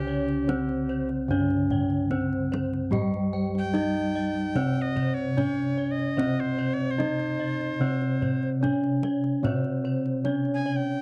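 This stately, shimmering Javanese gamelan passage, cut from a longer piece, opens at once with its metallophones, gongs and recorder sounding together, and the kendang joins at 0.3 seconds with deep, hard-handed strokes. At a steady 74 BPM in a straight 4/4, an up-front bronze metallophone struck with a wooden mallet carries the ringing melody, touched by a slapback echo. Beneath it, a lower metallophone gives a close, dry and full accompaniment whose paired tuning creates shimmering beats, while a bright, horn-mallet metallophone and a set of round, dark, smooth bossed gongs trace high arpeggios; the gong arpeggios stop at 10.7 seconds. A second set of bossed gongs holds the bass in the background. Floating above is a breathy, reedy alto recorder with a soft attack and vibrato, playing a quieter second line. The sound is a dry, close 1970s-style studio recording with light reverb.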